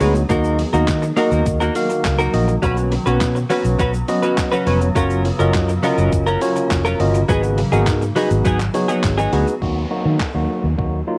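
A straight 4/4 dance-pop pulse at 103 BPM drives this energetic, bittersweet excerpt in Eb minor, where a thumpy, tape-softened 12-bit drum machine with handclaps, hi-hat, shaker and snare sits under a dark, round, foam-muted fingered bass and a clean tine electric piano, both pumping with sidechain, while a compressed, direct-recorded clean electric guitar riff shimmers through lush chorus, a blurred granular cloud pad and a grainy tube shaker murmur very quietly beneath the Ebm, Bsus2, Gbmaj7 and Abm7 chords, and at 9.6 s a downlifter falls away as the home-cassette recording returns to Ebm in light digital ambience.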